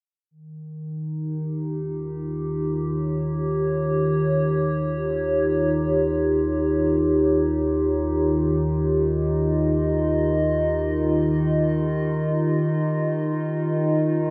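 Ambient music in free time, weightless and peaceful, drifting like a fragment lifted from a longer piece. A warbly, tape-like pad enters at 0.6 seconds with sustained chords, its detuned square and triangle tones blurred by chorus and a slow attack, giving it a nostalgic, lo-fi haze that sits up front in the mix. At 1.9 seconds a deep, rumbling drone settles beneath it as the bass, its sawtooth and triangle body thickened by tube saturation and carrying an ominous shadow under the calm. A gradual fade-in on the synth drone runs across the whole excerpt, and the harmony shifts only once, from an Eb7 chord to a rootless Ab5 over Eb near 13.1 seconds. The whole mix is soaked in a wet plate reverb, leaving long, dreamy tails.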